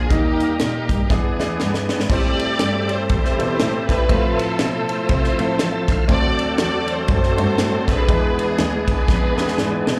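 This sounds like a live club gig heard through the venue's PA, with small-room ambience and club reverb around the band. It is a soulful, solemn uptempo gospel cut from a longer piece, swinging at 120 BPM in 4/4 in A minor, with the chords moving through Am7, Fmaj7/A, D7 and E7. A lush, expressive string section carries the melody with vibrato, portamento and a slapback echo. A gritty, overdriven tonewheel organ holds thick sustained chords through a slow rotary speaker and chorus vibrato, stepping forward with a fill at 5.3 seconds. Underneath, a dark, distant bowed cello plays the bass line, while a woody upright piano with long sustain and its own slapback echo accompanies from the background. The acoustic funk kit sits up front with a high-tuned snare and tight kick, and it plays fills at 1.1 and 9.1 seconds.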